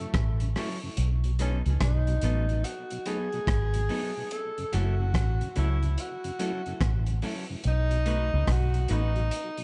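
A dark, echo-heavy mix with a small-room feel and a rolled-off top opens this short roots reggae excerpt, sunny and relaxed at 72 BPM in 4/4 with a swung sixteenth-note lilt in B mixolydian. Up front, a foam-muted, round electric bass holds the low end, while a gritty, saturated breakbeat kit with a punchy kick sounds hi-hat, kick drum and rim click. In the background, a mellow tonewheel organ with key click and a slow rotary speaker carries the accompaniment through tape echo, joined at 0.6 seconds by a compressed electric guitar that is slightly broken-up and also sent through tape echo. A distant, roomy tenor saxophone with light vibrato takes the solo melody, its tape echo trailing behind each phrase. The harmony moves between F#m7 and B7, and the whole passage is cut from a longer piece.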